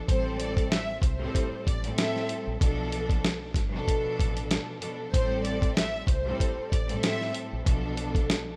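Reflective and gritty, this boom-bap hip-hop cut in A minor rides a swung 95 BPM groove, moving between Am7 and Bm7b5 across roughly 8.6 seconds taken from a longer piece. A compressed, dusty sampler-style drum kit sits up front with a thumpy kick, medium-tuned snare and hi-hat, while a deep, round fingered electric bass adds a punchy, foam-muted low end. A clear, lush string section carries the accompaniment through a cassette tape coloring, and a darker bowed violin section sings an expressive, vibrato-laden melody through analog delay until 7.3 seconds, all inside a rough home demo mix with light small-room reverb.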